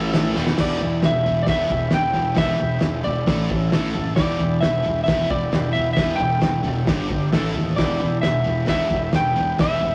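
A rough rehearsal-room recording with a moderate studio reverb frames this gritty, raw garage rock clip. A thick, double-tracked fuzz guitar sits up front with a bright, distorted riff in a low register, while a fuzz-driven fingered bass adds punchy, overdriven weight from the background. The cloth-damped drum kit sounds muffled and thuddy, with a fat snare, tight kick, dark cymbals and toms, and plays a fill at 0.4 seconds. An electric slide guitar enters at 0.6 seconds, carrying a dark, slightly broken-up melody high in the mix. Beneath it, a buzzy vintage combo organ holds clean sustained chords with light vibrato and steps forward with a short fill at 3.5 seconds, as the straight, steady groove cycles through E minor, A and G.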